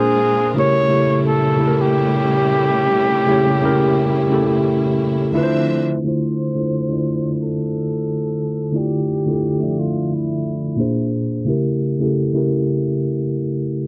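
A dark, low-passed production sits in a damp studio ambience with a short half-second decay, giving this reflective, nostalgic lo-fi hip hop excerpt a hazy, closed-in glow. At 88 BPM in 4/4 with a lazy swing on the sixteenths, it moves through D minor over jazzy harmony that opens on Bb9 and A7b9, settles on Dm9 at 5.3 seconds, and returns to Bb9 before closing on A7b9 with C# in the bass. A worn, slightly out-of-tune tine electric piano carries the accompaniment clean and direct at the front from start to finish, spanning Bb2 to E5. Above it, a mellow, breathy flugelhorn plays a jazz-style solo melody between E4 and C#5 with vibrato, sitting present and forward until 11.2 seconds. A bowed studio string section adds expressive, vibrato-rich sustained chords underneath for the opening 6.0 seconds, and from that point a filter sweep runs through the second section to the end at 13.9 seconds.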